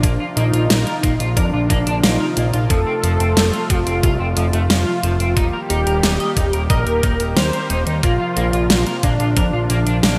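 A thick, detuned unison lead sings a mellow melody with vibrato from the very start, through digital delay and shimmer reverb, over a fat, nasal analog bass that sits up front. This romantic, nostalgic synthwave piece moves at 90 BPM in a straight 4/4 in Bb major, cycling through Bbsus2, F and Eb before returning to Bbsus2 at 8.0 seconds. Behind the lead, a shimmering pulse-width pad holds sustained chords in the background, pumping against the beat, while a picked electric guitar at the edge of break-up plays a riff coated in lush chorus, delay and shimmer reverb. A thumpy, sampler-style electronic kick drives the pulse until 9.5 seconds, joined by a layered pop kit with hi-hat and a fat, gated snare placed up front. The whole passage, cut from a longer piece, carries a bright 1980s-style digital sheen inside a lush hall reverb.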